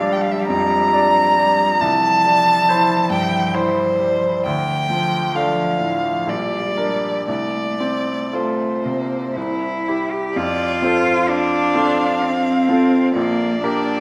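Tender and lyrical, this slow romantic movement for piano trio moves in a rubato 3/4 at 56-72 BPM in F major, with a close, up-front solo violin carrying the melody in an expressive bowed line full of vibrato and portamento. Beneath it a single cello sings a rich, focused second line with a smooth top and its own vibrato, while the clear, open grand piano sits up front with long sustain in the accompaniment. All three play throughout this passage from a longer work, which turns toward a new section at 10.4 s, and the trio is bathed in a wet scoring-stage reverb.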